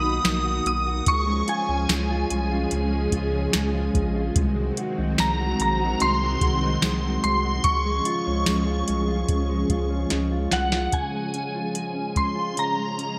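A shimmering FM bell with a halo carries the melody of this blissful, floating dream pop passage at 73 BPM in Db major, its up-front, warbling line ringing high over an ensemble chorus and delay. Beneath it, a string machine set to cellos holds full-bodied sawtooth chords with a sub octave and a slow attack, while a mellow electric guitar plays dark, clean, fingered arpeggios softened by lush chorus and delay. A saturated sine sub bass anchors the low end with a fast attack and sustained notes, and a soft vintage rhythm box enters at 0.2 seconds with a deep kick, crisp snare, metallic hats and tambourine, dry and up front yet touched with gated reverb. The harmony moves from Cbmaj7 to Db, and a drum fill leads into a new section at 10.9 seconds, where the sub bass drops out. A moderate plate reverb and bright 1980s-style digital production give this fragment of a longer piece its glossy, airy sheen.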